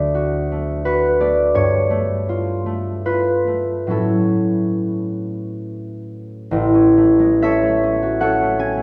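Flowing in a gently swaying triple metre, the rhythm stretches and relaxes freely, giving this classical solo harp passage a dreamy, serene calm. A concert harp plays alone for the full 8.8 seconds, its thumb-plucked strings sounding bright and ringing as they span from A1 up to G#5. The harmony drifts from D to G9 and settles on A6, lending the phrase a soft, floating colour. At 6.5 s the music turns to a new section, which carries on until the fragment is cut from the longer piece. The harp sits up front, while a lush recital hall reverb with a 1.7 s decay places the listener further back in the room, letting each note bloom into the space.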